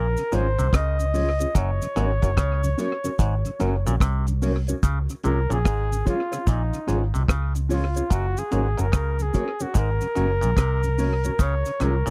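A dry, close recording with a 1970s studio character opens this sunny, laid-back roots reggae passage, cut from a longer piece and swung on the sixteenths. Up front sit a dark, tight-kicked acoustic drum kit with a rolled-off top, playing hi-hat, kick and rim click, and a foam-muted electric bass that sounds round, amped and punchy. A bright, twangy clav plays a hollow, nasal riff through a combo amp, while a mellow tonewheel organ adds clean accompaniment colored by chorus vibrato and a slow rotary speaker. A clean, fingered electric guitar with dub echo adds accompaniment above, and a close, dry cabasa sits quietly beneath. A warm flugelhorn carries the melody with light vibrato and a smooth top, also trailed by dub echo, and from 4.8 seconds it takes a pop-style solo over chords that move between Db and Gb.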